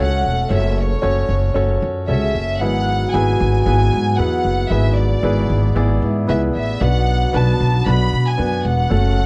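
From the first beat, a growly, thumpy upright bass sits up front beside an intimate concert grand piano with audible action noise, driving this earnest piano-led pop piece at 114 BPM in 4/4, while a bowed violin section with light vibrato and slapback echo carries the melody over a dark, distant French horn section in the background, moving through F#m, E and Bm in a dry, close 1970s-style studio sound tuned to A4 = 437 Hz.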